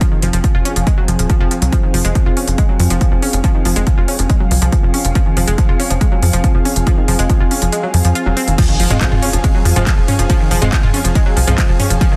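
Driving peak-time techno at 140 BPM in F minor, this hypnotic, relentless excerpt rides an overdriven, up-front kick and a layered kit of smooth hats, handclaps, ride, crash and toms beneath a tight, punchy sawtooth sequencer bass, a round, wave-folded analog pluck riff with delay, an eerie, nasal FM drone warbling in the background and an ethereal, airy pad, with sidechain pumping on the bass, pluck, drone and pad. The kick falls away at 7.7 seconds, and the drop lands at 8.6 seconds with a very quiet electronic impact, followed moments later by an aggressive, thick, ring-modulated rave stab, all over a dense, heavily limited master.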